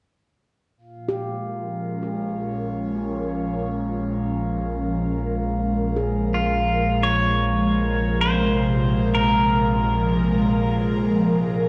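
Reflective and spacious, this free-time ambient passage in Bb dorian, cut from a longer piece, rests on a Bbm7 chord. An airy, breathy pad with chorus and phaser sits up front, and glassy, ethereal glass harmonica tones shimmer above it. A ringing, meditative handpan plays arpeggios through tape echo and fades out, while a deep, ominous, rumbling drone rises in from 2.6 seconds. At 6.3 seconds a bright, twangy pedal steel guitar enters up front with a slide melody and volume swells, all set in a wet concert hall reverb with a softened top end.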